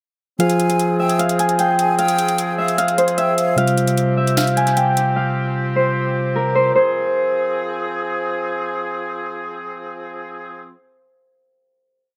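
Brooding and eerie, this short trap piece in F harmonic minor moves at 151 BPM with a half-time feel, as a thumb-plucked, ringing Celtic harp loops its melody up front through a low-pass filter and dub echo, over held, spread chords from a mellow tine electric piano. A breathy concert flute adds a sparse, tongued counter-melody with vibrato until 3.6 seconds, while an electronic trap kit with a sharp snare layered with finger snaps and metallic sixteenth-note hi-hats bounces beneath until 5.1 seconds. A distant, roomy woodwind section holds a clear sustained pad with light vibrato from Fm through Csus4 and back to a final Fm chord that rings out to 10.7 seconds in an echo-heavy mix.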